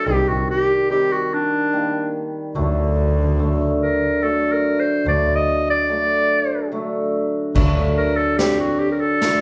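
Festive yet bittersweet, this short klezmer excerpt moves in a stately 3/4 at 72 BPM, rooted in D phrygian dominant with a straight feel. A clear clarinet carries the melody in a classical solo style, sitting up front throughout. Beneath it, a hammered dulcimer supplies shimmering, ringing accompaniment, while a bowed double bass, rich and focused with vibrato, anchors the low end until 7.8 seconds. The harmony shifts from C minor to D major at 2.6 seconds. At 7.6 seconds a street-band drum kit arrives with a boomy kick, medium-tuned snare and dark cymbals, giving the closing passage an airy, polished lift. The whole band plays live together in a large studio with moderate reverb.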